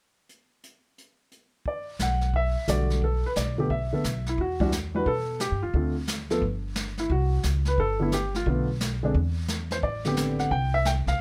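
A brushed jazz kit opens this cool, smoky excerpt of a swinging jazz piano trio in E minor at 176 BPM, its medium-tuned snare and boomy kick sitting back in a dry, close-miked studio room. The upright piano takes the melody at 1.7 seconds with a woody, natural tone up front, and the plucked upright bass on steel strings follows at 2.0 seconds. The harmony moves from Em11 through Dm7, C5 and Bm7b5, with chord-free breaks between, and settles on Am11.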